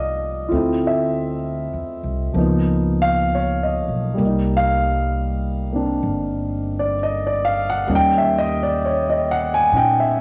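The recording has the hushed, homespun quality of a cassette made at home, set in a small room with a light touch of studio reverb. It is a wistful, intimate jazz ballad cut from a longer piece, moving at an unhurried pace with a gentle swing to its eighth notes. A grand piano sits up front, with its hammers and keys audible in the action noise, a natural tone and a long, ringing sustain, all softened by the cassette tape. Beneath it, a pizzicato upright bass with steel strings supplies a woody low end, playing quieter in the mix than the piano. The piano's harmony opens on a rootless Ab69 and drifts through Dm9 and Db13 before settling on Cm9 at 4.2 seconds, then turns to Eb7 at 7.9 seconds. Both instruments play together throughout, until the fragment breaks off at 10.2 seconds.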